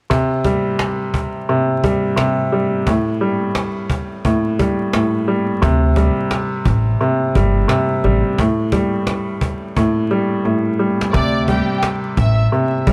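Boom-bap hip-hop excerpt with a nostalgic, soulful swing, where a woody upright piano with short sustain sits up front over compressed, saturated cajon and vinyl crackle, a dark, thumpy pizzicato upright bass joins at 5.6 seconds, a break and drum fill lead into a new section, and a lush, bowed violin section with expressive vibrato and analog delay appears briefly at 11.1 seconds.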